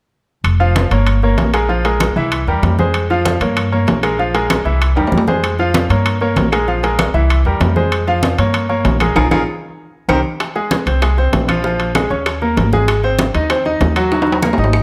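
Danceable and fiery, this salsa excerpt drives forward in straight 4/4, cut from a longer piece. A bright baby grand piano sits up front with a brilliant, intimate presence, its action noise audible as it outlines a cycling minor progression, while a pizzicato upright bass, dark and growly on steel strings, anchors the low end close by. Ringing congas and metal-shelled timbales fill out the percussion, with woody claves tucked very quietly underneath. Drum fills mark the phrase ends near 5.0 and 9.6 seconds, and a band accent lands just before a new section at 10.4 seconds, where tight, high-tuned bongos join softly in the background as the harmony moves through fresh chords. A moderate large-studio reverb gives the ensemble a roomy glow.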